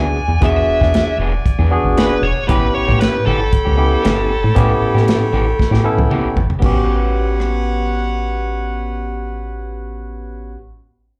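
Heard through a club's PA with a light wash of room reverb, this short cut from a longer soul blues piece has a rollicking, swaggering strut over a straight 4/4 feel. A smooth, overdriven lead guitar sits up front with slapback echo, carrying the melody until 6.1 seconds, while a barky tine electric piano, lightly driven through a combo amp, fills in the accompaniment beneath it. A brilliant, tight horn section holds sustained chords up high, and a second electric guitar, slightly broken-up and lo-fi through a small old amp, adds picked stabs in the background with its own slapback echo. Underneath, a punchy, round FM bass with a fast, decaying attack anchors the low end, and a dark, rolled-off soul drum kit with a tight kick comes in at 0.4 seconds, playing a fill that leads into the second section at 6.6 seconds. The harmony moves from E9 to A9 and settles on A13 as that new section begins.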